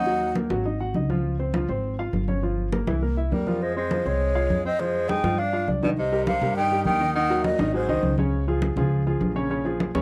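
This Afro-Cuban jazz fragment, cut from a longer piece, feels sophisticated and driving. A breathy, hollow concert flute carries the melody with a straight tone, supported beneath by a clear tenor saxophone playing a second line with vibrato and scooped notes; both horns sound briefly at the start, then return at 3.3 seconds and stop at 8.2 seconds. The flute sits close-miked and mellow, while the saxophone sounds distant and roomy, and both horns share a soft attack. Throughout, an intimate grand piano accompanies up front with audible action noise, alongside a woody pizzicato upright bass on steel strings. Ringing, medium-tuned congas played with gentle hands fill out the groove in a dry, close 1970s-style studio sound with small room ambience.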